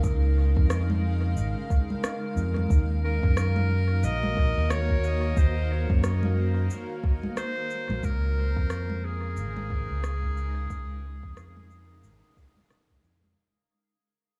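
This hazy, deep ambient dub piece opens with a soft electronic kick, a growly, amped fingered electric bass sitting up front, and a blurred, cloudy granular pad that holds full-bodied sustained chords in its own reverb. Electronic shaker, rim click and congas carry a dub echo beneath the groove. In the background, a glassy texture of drifting overtones hovers on a single Bb4 with chorus and reverb. The tempo is 90 BPM in 4/4, with a 16th-note swing. At 3.0 seconds, a bright, classical-style solo clarinet enters with its own dub echo as the harmony moves between Dbadd9 and Ebm69. A fade-out begins at 6.3 seconds, and the whole is heard in a small room ambience, as a section taken from a longer work.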